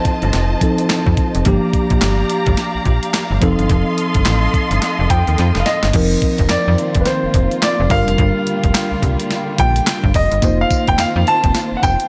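A lightly reverberant mix opens this confident, bouncy new jack swing R&B excerpt at 107 BPM with a swung 16th feel, where an up-front, thumpy, tape-tinged 12-bit drum machine with handclaps, tambourine and crash drives an up-front, snappy, metallic FM bass while a worn, slightly out-of-tune tine electric piano and a dark, lush bowed string section hold chords over F7 and Gm7. An intimate grand piano melody with audible action noise enters at 5.1 seconds, and a drum fill at 5.4 seconds ushers in the next section at 5.9 seconds.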